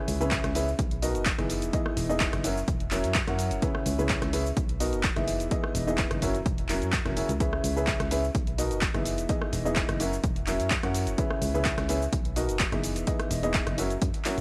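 A clear, woody upright piano opens this energetic, soulful piano house excerpt, playing a boxy, short-sustained riff up front that pumps against the beat and trails an analog delay. A solid FM bass enters almost at once, round and mellow with a fast attack that then decays, and it pumps in the same way beneath the piano. An overdriven analog drum machine supplies handclaps, hi-hat, rim click and shaker, while a punchy, layered electronic kick, also overdriven, drives the groove from 0.3 seconds; both carry the sound of being re-recorded in a large room. Far beneath them sits a very quiet, tape-warm sampler-style kit of compressed hi-hat and a medium-tuned snare. The whole passage repeats a cycle of C#m7, Bmaj7, Emaj7 and F#7, and the mix as a whole is dry and gritty, with a hardware edge and little reverb.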